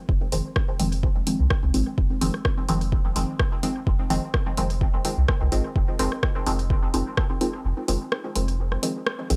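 A lightly swung groove drives this hazy, nocturnal dub techno fragment, anchored by a punchy, up-front electronic kick with a touch of studio reverb. A deep house kit of hi-hat and rim click fills in the pulse from 0.3 seconds. Beneath it, a soft, round sub bass holds a sustained low line that pumps against the kick. Muted, detuned chord stabs, up front and mellow, sit on a single minor-seventh harmony, colored by a filter sweep, a phaser and trailing dub echo, and they pump in time as well. The kick stops at 7.3 seconds, leaving the stabs, bass and kit to carry on until a band accent at 9.1 seconds. The sound is dry and gritty, with a saturated hardware edge.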